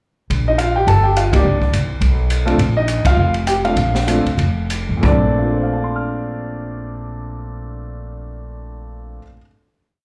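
A live club recording with light reverb captures a sophisticated, warm jazz piano trio in a brief complete piece, where an intimate grand piano with audible action noise, plate reverb and slapback echo states a motif-based melody partly doubled in octaves over rootless syncopated comping, a woody, thumpy upright bass plays in two, and a small-room drum kit with dark cymbals and a boomy kick rides until 5.1 seconds, as the band hits accents at 1.3 and 3.0 seconds, slows down, and settles on a final Bbmaj9 chord.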